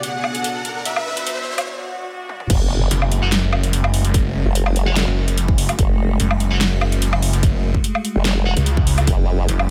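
This heavy, chaotic slice of half-time wobble dubstep opens on a brief, smooth supersaw melody with tape echo, an evolving wavetable pad with phaser and sidechain pumping, tape-warm drums with metallic hats and a huge snare, and an electronic riser and swell building the tension. At 2.5 seconds the drop lands with an impact, a punchy electronic kick and an up-front formant-sweep wobble bass with chorus and overdrive, soon joined by a snarling, growling distorted saw bass with a moving notch. Tight, bright distorted guitar stabs with tape echo sit in the background, and the mix stays mostly dry.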